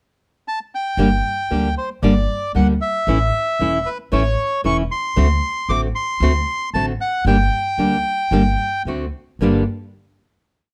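Sultry and dramatic, this short tango piece in G harmonic minor moves at 115 BPM in 4/4 with a rubato feel. The reedy, dark bandoneon opens alone with a pickup at 0.5 seconds, then carries a motif-based melody built in sentence-like phrases, sitting up front in the mix. At 1.0 seconds the nylon-string guitar and upright bass enter together: the guitar, fingerpicked in a classical manner with fresh strings, supplies short tango chords close to the listener, while the woody pizzicato bass on steel strings marks a marcato pulse in four. The harmony travels from G minor through A and D7 before returning to G minor, and a final chord arrives at 9.4 seconds after the bandoneon has finished. Close, detailed microphones and light reverb give the trio an intimate, present sound.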